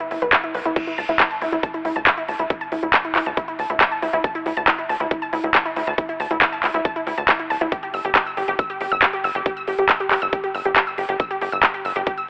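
Uplifting, euphoric trance at 138 BPM in straight 4/4, cut from a longer piece, where an up-front, lush, detuned unison pluck and a crisp, up-front big-room kit of hi-hats, handclaps and crash cymbal open together. The pluck spins arpeggios through a filter sweep with tape echo and sidechain pumping over Gadd11 and Dsus2 chords. A nasal sawtooth sequencer bass joins from 0.1 seconds and a punchy layered electronic kick from 0.3 seconds, all under light digital ambience with a telephone-like tone, and the harmony drops away at 7.7 seconds.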